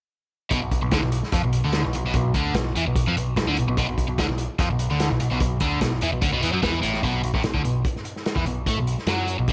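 At 0.5 s a crunchy, double-tracked overdriven guitar riff on a B5 chord kicks in up front, its bright tone colored by phaser, together with a growling picked electric bass carrying its own overdrive and a muffled, lo-fi vintage drum kit with a punchy kick, medium-tuned snare and hi-hat. This driving, confident classic rock passage moves at 147 BPM in a straight 4/4, tuned to A4 = 439 Hz, and sits in a small room ambience. The arrangement shifts into a new section at 7.0 s before this cut from a longer piece ends at 9.5 s.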